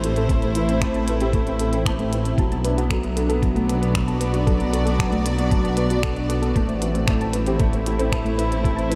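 Cinematic and hypnotic, this short cut from a longer piece of piano and strings electronica moves in a straight 4/4 over a shift from Am to Bm at 2.4 seconds and back to Am at 6.6 seconds. A dark concert grand piano carries the riff with a mellow, smooth, vintage tone and short sustain, colored by ensemble chorus and tape echo. Beneath it, a studio string section holds sustained chords with soft attack, light vibrato and an intimate, close sul tasto sound. A gentle, round pluck plays arpeggios in the background, its full-bodied tone roughened by vintage 12-bit sampler grit and shaped by chorus, tape echo and sidechain pumping, while a deep, rumbling detuned saw bass beats and pumps underneath. A minimal electronic kit of finger snaps and clicky, tape-warm hi-hats sits low throughout, joined from 0.3 seconds by a muffled, thumpy, pitched-down electronic kick, all bathed in a huge ambient reverb that leaves the mix dreamy and soaked.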